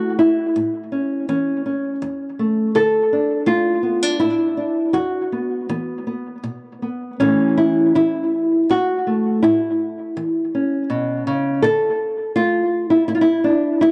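A small, thumb-plucked nylon-string guitar sits up front and plays alone through this hopeful, pastoral folk passage cut from a longer piece, moving rubato in 3/4 around 82 BPM in A major across a range of E2 to A4 through A, Dmadd9, Esus2, back to A at 7.2 seconds and onto D5, its tone touched by analog delay and a light studio reverb in a dry, gritty hardware recording.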